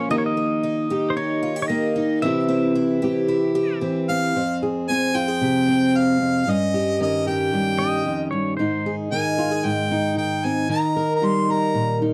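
Set in a straight 4/4 at 113 BPM, this short cut from a longer acoustic folk piece in F minor carries a wistful, melancholic mood. A fingerpicked steel-string acoustic guitar, bright with fresh strings and audible finger squeak, holds the accompaniment up front for the full 12.1 seconds, while a picked twelve-string adds shimmering, octave-doubled arpeggios until 4.4 seconds. The opening belongs to a pedal steel guitar solo, clean and compressed with slide and volume swells played with fingerpicks, moving over Eb and C chords before it returns briefly around 7.8 seconds. From 4.1 seconds a clear harmonica takes the melody in a classical style, its light vibrato carrying a distant, roomy quality and a slapback echo as the harmony moves through Fm, Eb7/G, Abmaj7(no3) and back to Eb. The sound is a dry, close 1970s-style studio recording touched with light reverb.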